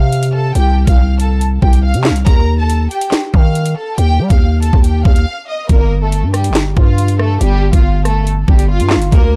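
Menacing and dark, this drill excerpt at 140 BPM in half-time G minor sets a lush, vibrato-laden studio violin section carrying the melody through digital delay over a growling, buzzy 808-style bass and an up-front electronic kit of knocking kick, sharp snare, metallic hats, rim clicks and handclaps, with a brief break at 5.3 seconds before a new section at 5.7 seconds in a close, dry mix.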